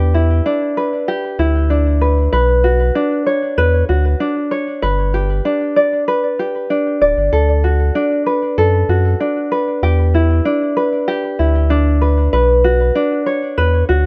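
Folktronica at 96 BPM in a straight 4/4, delicate and pastoral, where a light, thumb-plucked tenor ukulele spins acoustic arpeggios through a digital delay over a deep, round sine sub bass. Both sit up front in a moderate studio ambience as the chords move from Em7 through Bmadd9, G and D6 and back again across this 14.1-second section cut from a longer piece tuned to A4 = 438 Hz.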